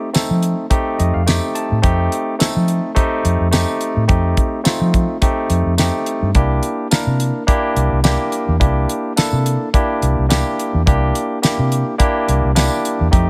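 Laid-back and rollicking, this short cut from a longer piece settles into a straight-eighth soul blues groove with a slight swing on the sixteenths. A barky tine electric piano, lightly overdriven through a combo amp and placed up front, carries the accompaniment from the start and slips in a brief fill between 0.7 and 1.8 seconds. A dry, damped 70s acoustic drum kit with a fat snare, tight kick, hi-hat and tambourine also sits forward in the mix. A vintage foam-muted fingered electric bass, dark, round and punchy through an amp, enters at 0.3 seconds and anchors the low end. The harmony rests on F9 before moving to C9 at 6.4 seconds, all wrapped in a studio reverb.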